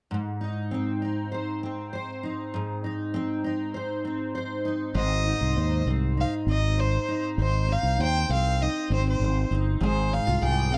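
A dark, warm studio sound with moderate reverb frames this easy-going, sunny pop excerpt in a straight 4/4. A double-tracked, full-bodied steel-string acoustic guitar opens alone with a picked accompaniment and audible finger squeak. At about 5 seconds a growly fretless electric bass with analog chorus enters below it, and a smooth, even violin with vibrato and plate reverb takes the melody, with the harmony settling from Ab toward Fm7/Ab near 9.8 seconds.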